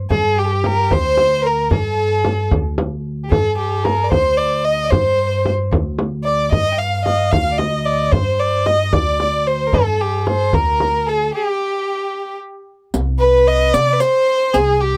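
In a straight 6/8 at 75 BPM, this hypnotic, soulful excerpt of an Arabic maqam ensemble in G bayati rests on a woody, plucked upright bass and the soft-handed pulse of a close frame drum. Up front, a rich bowed violin carries the melody with smooth vibrato, while a clear fiddle adds a lighter second line in the background. After the frame drum stops at 10.9 seconds and a break begins at 11.3 seconds, a riq with bright jingles enters at 12.9 seconds for the closing section, all in a dry sound with little reverb.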